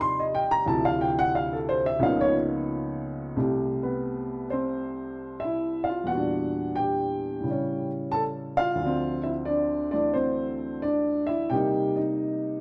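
Set in a dark, moderately reverberant large studio, this relaxed, sophisticated solo jazz fragment, cut from a longer piece, features an up-front upright piano with a woody, boxy tone, long sustain and audible action noise, swinging through lush extended harmonies that settle onto a C6 chord at 3.4 seconds before moving through Em7b5, A7 and Dm7 and ending on Cm7.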